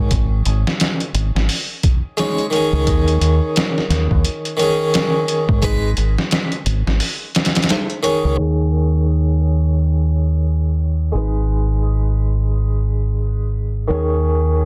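Swung sixteenths in 4/4 drive this brooding, melancholic trip hop excerpt, where a muffled, pitched-down sampler-style drum kit with a thumpy kick and overdrive plays until 8.2 seconds beneath a dark, round, fingered dub bass and a brilliant, plucked harpsichord with octave strings, tremolo and tape echo, inside a digital ambience and a dense, heavily limited, low-pass-filtered master as the chords move between G#m and D#7sus4.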